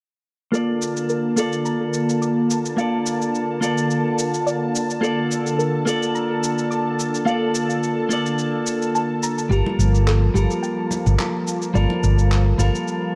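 From 0.5 s, a bright, twangy clean electric guitar, a lush detuned unison pad with chorus and phaser, a soft round pluck playing arpeggios in the background under a filter sweep and tape echo, and gritty sampled shaker and handclaps open this sunny, smooth sunset chillout piece at 107 BPM in Bb major with a light 16th-note swing, moving from Bbmaj7 to Gm9 at 9.5 s as a dark, round, up-front hollow-body electric bass enters, followed at 9.7 s by very quiet vintage congas, all set in a dark production with concert hall reverb.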